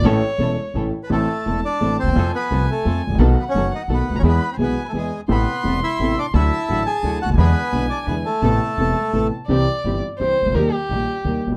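Lightly reverberant and dark-toned, this dramatic, melancholic tango fragment in 3/4 at 172 BPM, rubato and in A harmonic minor, opens with an expressive bowed violin solo rich in vibrato and portamento, before a reedy, up-front bandoneon carries the melody from 1.0 to 9.3 seconds over a polished, short-sustained grand piano, a woody, thumpy pizzicato upright bass and very quiet, lush stabs from a studio string section, with the violin taking the solo again at 9.5 seconds.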